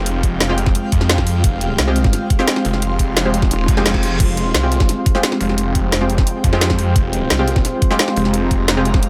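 A dry, up-front mix carries this aggressive, mechanical stretch of dark technical drum and bass, where a knocking electronic kick and an overdriven kit with a woody snare, bright hats and crash drive beneath a snarling, growling distorted saw bass, while a bold orchestra-hit-like stab with dub echo, a deep, moody pumping pad and an airy, breathy phased pad sit in the background, and a brief nasal vowel-sweep wobble bass at 3.5 seconds leads into a reverse cymbal at 3.7 seconds.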